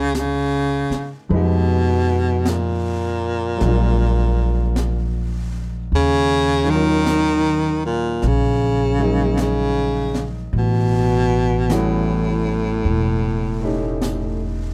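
Swung eighths carry this slow, intimate late-night jazz ballad, cut from a longer piece, as a brushed kit with a high-tuned snare and hi-hat, heard in a small room, sits softly behind a woody pizzicato upright bass placed up front. A clear baritone saxophone takes the solo melody in its low register, with vibrato and a soft attack, while a smooth, vintage-toned grand piano comps in the background through chords such as F#69, D#m9 and A13. Light reverb and a dark, warm production give the whole an intimate closeness.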